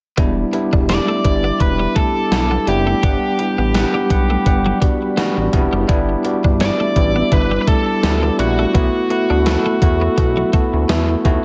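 A gated digital drum machine sets a lightly swung sixteenth-note feel in 4/4, its thumpy kick and gated-reverb snare sitting up front with the sound of a large room around them. This nostalgic, dramatic slice of 1980s-style pop is cut from a longer piece and moves through Em7, Gmaj7, Em7/G and B7sus4. A chorused synth bass with a glossy pulse-wave tone anchors the low end, while a barky, bell-like tine electric piano carries the accompaniment close to the listener. Further back, a detuned, resonant pad sustains chords through chorus and phaser, and a twangy twelve-string electric guitar plays a clean, compressed riff with analog chorus and delay until 11.1 seconds. At 0.9 seconds an overdriven, biting lead guitar enters with the melody, treated with delay and standing prominently in the mix until 10.5 seconds. Light reverb and digital ambience give the whole track a polished sheen.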